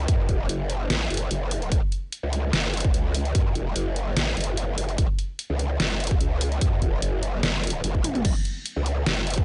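A half-time 4/4 groove at 147 BPM with a light swing on the sixteenths drives this menacing, heavy wobble dubstep excerpt in F# minor, where a growling, detuned growl bass with chorus, overdrive and distortion wobbles up front between E1 and F#2, joined from 0.1 seconds by a punchy electronic kick drum and a dubstep kit with a deep snare, hi-hat, crash cymbal and toms, all in a dry mix capped below 10.8 kHz, with a drum fill at 8.0 seconds before the cut at 9.4 seconds.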